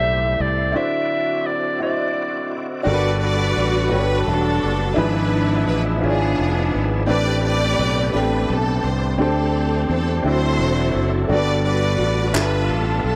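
A clear, focused studio string section carries the bowed melody from 2.9 seconds to the end, sitting up front with vibrato and a slapback echo in this slow, reverent yet jubilant gospel passage in a straight 6/8. Before the strings enter, a soprano saxophone with light vibrato and a vintage, jazz-style tone sings a brief opening phrase, while a French horn section adds soft sustained chords in the background; both carry on through a break that opens at 0.8 seconds and fall away just before the strings arrive. Throughout, a woody, smooth upright piano with long sustain plays the accompaniment, and an overdriven tonewheel organ fills out the harmony with thick, gritty held chords, percussive attack, chorus vibrato and a fast rotary speaker, kept in the background. A punchy, warm fingered electric bass stays direct and up front underneath, anchoring the gospel progression as it moves toward a closing G13. 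Crisp group handclaps ring out distantly at 12.4 seconds, heard in a large room, while the rest sits in a small room with light reverb in this cut from a longer piece.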